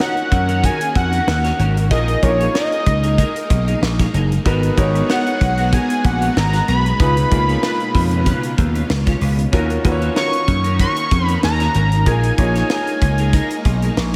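Polished 1980s jazz-funk pop in Eb minor at 95 BPM with a light 16th-note swing, this slick, nocturnal excerpt from a longer piece sets a fat, warbling analog lead with vibrato and delay up front over a tight, small-room funk kit with a high-tuned snare and a punchy, tube-saturated slap bass that enters at 0.3 seconds. Clear grand piano plays accompaniment with subtle chorus, while a shimmering sawtooth string machine holds sustained chords and a dark, picked clean electric guitar plays a riff, both sitting in the background with ensemble chorus. Chords move from Ebm7 through Bb7sus4, Abm9 and Db7, and a lush hall reverb soaks the mix in a dreamy haze.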